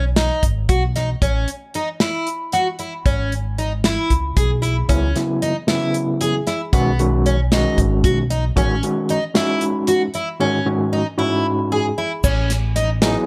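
A shimmering, octave-doubled twelve-string acoustic guitar fingerpicks arpeggios up front through plate reverb in this bright, driving progressive instrumental in 7/8, carried by a growly, woody upright bass and a dry soul drum kit with dark cymbals and a tight kick, while a gritty, overdriven tine electric piano with fast tremolo barks in at 4.9 seconds and a grainy tube shaker joins in the background at 12.2 seconds as the cut lands on an Amaj9.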